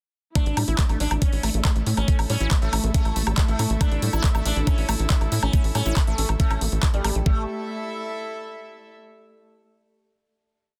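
The recording is dense and heavily limited, with a dry, close sound and a knocking electronic kick placed up front. This is a short, hypnotic and intense psychedelic trance piece in A major at 139 BPM in a straight 4/4, built almost entirely as one drop that runs from 0.4 to 7.3 seconds. The kick drives a four-on-the-floor pulse, joined by an overdriven programmed techno kit of handclaps, closed and open hi-hats and a high woodblock. Underneath, a punchy sawtooth sequencer bass rolls in sixteenth notes, while a squelchy, resonant acid line with accents and slides sits in the background under phaser and delay. A buzzing, plectrum-plucked sitar repeats a riff melody through phaser, delay and a gritty 12-bit sampler tone, over a dark, pulsing gated drone with chorus and reverb, and a very quiet, detuned formant-filtered wobble bass appears briefly between 1.5 and 3.4 seconds. A reedy, bowed chamber string ensemble in period style carries slowly shifting chords with sidechain pumping and outlasts the rest, sustaining a final chord until 8.9 seconds.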